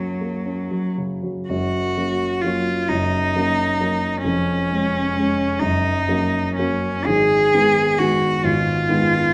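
A bowed cello and a grand piano begin together in this short passage cut from a longer romantic classical duo, set in F# major with A4 tuned to 439 Hz. The cello carries the melody between F#3 and G#4 with a rich, focused tone and vibrato, a single player placed up front, while the warm grand piano accompanies from as low as E#1, its notes holding only briefly. The music moves slowly in 6/8 at about 37 to 46 beats per minute, counted in dotted quarters, and the pulse bends freely with rubato. A new section opens at 1.5 seconds, and the harmony moves from F# to C# over E# at 4.3 seconds, back to F#, then to G# minor at 7.1 seconds. A wet recital hall reverb with a 1.3-second decay surrounds the pair, lending the elegiac, yearning mood a sense of space.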